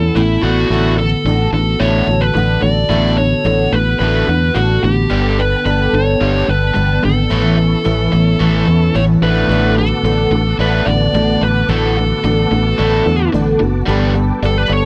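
A dark, smooth lead guitar with overdrive sings the melody from the outset, riding over a jangly bed of picked twelve-string acoustic guitar whose octave-doubled strings shimmer through an analog chorus, with a little finger squeak on the full-bodied jumbo body. Beneath them, a double-tracked overdriven electric guitar plays a low riff, while a round, up-front fingered electric bass anchors the bottom with a direct, amped tone. This is a straight, mid-paced rock excerpt with a warm, jangly mood, moving through D6/A, Gadd9 and Aadd9 chords. At 5.1 seconds a soft, flute-like tonewheel organ slips in behind the band with sustained chords, turning through a slow rotary speaker with chorus vibrato. Just before the cut, at 13.9 seconds, a worn, woody upright piano with a slightly detuned, short-sustained sound adds a brief accompanying touch in the background. The sound is dry and close, with light reverb, in the manner of a 1970s studio recording.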